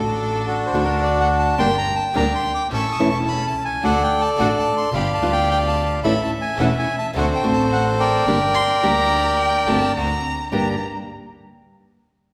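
Melancholic and passionate, this tango excerpt moves at 108 BPM in 4/4 with a rubato feel, set in G minor and tuned to A4 = 439 Hz. A reedy, dark bandoneon carries the melody up front with an airy breath, while a bowed double bass supplies a rich, intimate bass line with light vibrato and a soft attack. From 0.7 seconds a small, fingerpicked nylon-string guitar adds acoustic accompaniment, and a clear, biting string section punctuates the harmony with intense stabs from the background. At 8.5 seconds a single bowed violin enters with a second line, its tone warm and expressive with vibrato and portamento. The harmony circles through D, Gm, A, G7 and D7 before settling on Gm at 10.5 seconds, and the whole performance sits in wet recital-hall reverb, recorded in a church or concert hall.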